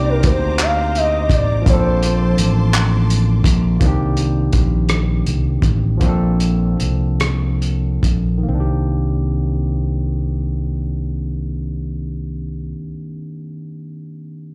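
A slow, straight six-eight sway carries this late-night, sultry R&B fragment, cut from a longer piece and heard as a live gig through a club's PA, with small-room reverb. A cloth-damped, thuddy drum kit sits up front with a tight kick, handclaps, hi-hat and rim clicks, its sound muffled, gritty and lo-fi, with a rolled-off top. A round, warm fingered electric bass anchors the low end. A bright, barky tine electric piano with slapback echo plays the accompaniment over Cm9 and Bbmaj9 chords throughout. A smooth, mellow sine-toned lead glides with portamento, vibrato and chorus, and stops at 3.1 seconds, while a lush, bowed symphonic string section holds expressive chords until 3.8 seconds. After that the groove slows down, and the drums drop out at 8.2 seconds, leaving the bass and electric piano.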